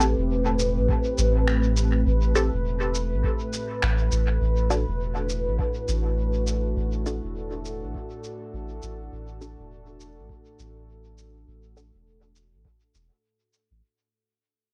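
A warbling, nostalgic tape-like pad holds sustained Am7 and D chords up front in this hazy, spacious ambient dub excerpt at 102 BPM with a swung 16th feel, alongside bright, wave-folded chord stabs with phaser and dub echo, a round, soft sub bass, muffled sampler-style shaker and finger snaps, and a deep analog kick entering at 0.9 s, all on a lo-fi home cassette recording in light reverb that fades out across its 13.8 seconds.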